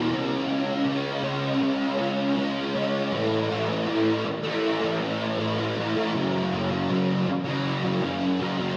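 This rock excerpt drifts at 80 BPM in a straight 4/4, with a blissful, wistful mood. A single thick, double-tracked fuzz electric guitar carries the whole passage up front, picked and distorted between F#2 and C#4, with ensemble chorus and delay adding shimmer. The chords move from C#5 to A5 at 3.1 seconds and then to F#5 at 6.1 seconds, marking a shift into a new section partway through. A lush hall reverb with a long 2.8-second tail soaks the mix, giving the guitar a dreamy, floating halo. The passage is cut from a longer piece.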